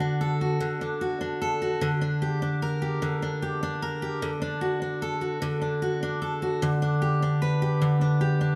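A stone room wraps this short pop excerpt in a wet reverb that lingers about 1.2 seconds, and the take has the natural air of players performing live together in one space. A fingerpicked steel-string acoustic guitar carries it alone from 0.0 to 8.6 seconds, sitting up front with a bright, full-bodied jumbo tone and audible finger squeaks along the strings. The mood is heartfelt and romantic, moving at an unhurried 50 beats per minute in a straight 6/8 lilt in D major. The harmony rests on D, shades into a tender Gm over D, returns home to D, then lifts to G over D as the fragment is cut from the longer piece. Playing between D3 and B4 with tuning set slightly sharp at A4 = 441 Hz, the guitar fills the room with an intimate, glowing resonance.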